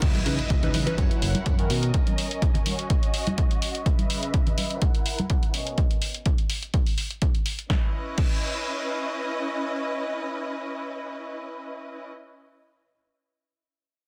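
A lush, bowed string section carries this brief, sensual slice of filtered disco house, holding sustained chords with focused ensemble vibrato under a low-pass filter and sidechain pumping from the start until 12.1 seconds. At 125 BPM in 4/4 with a light swing on the sixteenths, the groove sits in C# dorian, moving through C#m9, F#7, Bmaj9 and D#m7 before a chordless stretch and a return to C#m9. An up-front, punchy analog kick drives things alongside a drum machine supplying snare, hi-hat and crash, with sidechain pumping on the hats and cymbals, while tambourine and hard-handed congas sit in the background with their own filtering. Early on, a dark, round fingered electric bass and a funky, detuned sawtooth-and-square polysynth comp with chorus and phaser appear only briefly, the comp entering at 0.3 seconds, and a very quiet electronic impact marks the opening. A filter sweep runs through the first section, and the dense, heavily limited mix carries only light reverb, keeping the groovy feel close and present.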